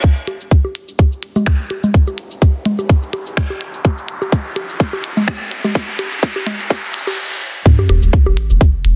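A tight, up-front electronic kick drives this clinical, quirky minimal techno fragment, cut from a longer piece, with a deep, thick, saturated sub bass pumping against it through sidechain and a high-pass filter. A clicky kit of cabasa, finger snaps, hi-hat and a softly clipped snare sits on a swung sixteenth-note feel, while tape-warm bongos and congas add colour. Reverse cymbal, riser and sub drop effects join a filter sweep building toward the drop and impact at 7.7 seconds, all in a dense, heavily limited digital mix.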